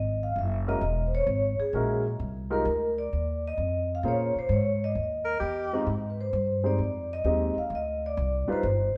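Late-night and swinging, this snippet of small-group jazz in C minor at 131 BPM sets a ringing, airy vibraphone melody with fast motor vibrato over a woody, thumpy upright bass and a dark, mellow grand piano from 0.7 seconds, while a clear alto saxophone with subtone and vibrato adds a brief second line between 5.2 and 6.0 seconds, the band captured live in a stone room with wet reverb.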